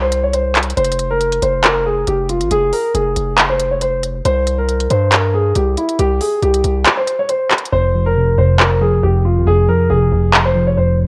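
A light reverb and the soft grain of a home cassette recording frame this short, menacing piece of half-time trap, cut from a longer work at 138 BPM in F minor. A dark, mellow concert grand piano carries the melody up front, its natural tone colored by cassette-tape character and an analog delay. Beneath it, a distorted 808-style bass hits heavy and saturated, with a fast attack, a decaying tail and a gritty noise layer. The trap drum kit is crisp and electronic, with handclaps and hi-hats sitting forward; the kick drops out from 6.9 to 7.7 seconds, and the hi-hats fall silent from 7.7 seconds onward. At that same moment, muted, felt-like synth keys enter with an intimate, soft tone, shaped by a filter sweep and chorus, as the harmony settles back onto F minor.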